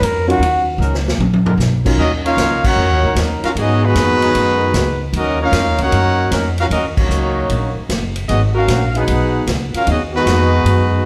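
Swinging and dramatic, this big band swing excerpt opens with a breathy, whispered solo trumpet and a brief vintage grand piano with audible action noise, over a woody pizzicato upright bass and a distant, roomy drum kit with dark cymbals and a punchy kick; a bright trombone section sustains chords in the background, and at 2.0 seconds a clear, smooth-topped trumpet section takes the melody over a warm trombone second line, with band accents at 2.6 and 6.9 seconds in a large, reverberant studio.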